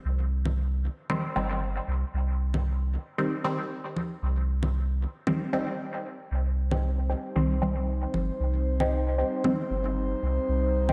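A swung 115 BPM dub techno pulse in C minor sets a nocturnal, hazy mood, as a round sub bass and electronic congas with dub echo enter near the start, muted, detuned chord stabs with phaser and echo arrive at 1.1 seconds, and a warbling lo-fi pluck with chorus and echo joins at 6.7 seconds just before a breathy, airy pad with chorus, all bathed in a lush hall reverb in this dreamy excerpt.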